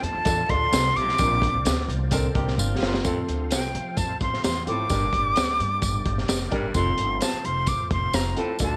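Joyful and uplifting, this short excerpt of uptempo 1960s-style soul in F major at 129 BPM sets an up-front, airy jazz flute melody over a crunchy, saturated breakbeat kit with a punchy kick and high-tuned snare, a woody, growly pizzicato upright bass, a natural-sounding upright piano, jingly close tambourine, a thick overdriven tonewheel organ with slow rotary speaker and chorus vibrato in the background, a whispered baritone saxophone riff entering at 1.0 seconds, a brief slightly broken-up electric guitar riff from 2.1 to 3.0 seconds alongside a drum fill, all in a small, lightly reverberant room as the chords move from Dm and Bbadd9 to F, Gm and back to F.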